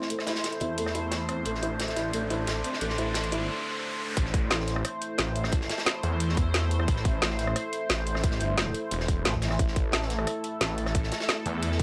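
A snarling, distorted saw bass growls up front in this dark, tense stretch of technical drum and bass, with a detuned unison sawtooth edge, a moving notch and sidechain pumping from 0.6 seconds onward. Set at 177 BPM in A minor on a single A minor chord, the piece opens with a build-up. A resonant, evolving pad holds sustained chords with a slow attack, chorus and a bright filter swell, while a soft, boxy, felt-muted upright piano plays intimate arpeggios through a low-pass filter and dub echo, its action noise audible. An electronic riser runs through the build before the drop lands at 4.2 seconds, where a tight, layered electronic kick drum enters. Two kits drive the rhythm: an up-front drum and bass kit with a woody snare, metallic hats and rim clicks, and a gritty, saturated breakbeat kit with a rolled-off top sitting in the background. Near 9.3 seconds a heavy, pulsing pluck wobble bass with chorus and tube saturation briefly appears, all within a small room and light reverb.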